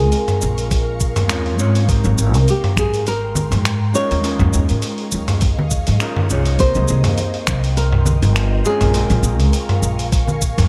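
Relaxed and sunny, this sunset chillout excerpt at 102 BPM with a light sixteenth-note swing sets a dark, fingerpicked nylon-string guitar melody with tape echo and audible finger squeak over a clean, fingered electric guitar accompaniment, an ethereal, detuned pad with chorus, phaser and 12-bit grit, and a woody, growly pizzicato upright bass up front, while a dusty, gritty sampler-style kit of finger snaps, hi-hat, shaker and toms is joined by a thumpy electronic kick at 0.7 seconds and ringing, low-tuned congas in the background from 2.0 seconds, all moving through Bbm7, Abmaj9, Eb9sus4 and Cm7.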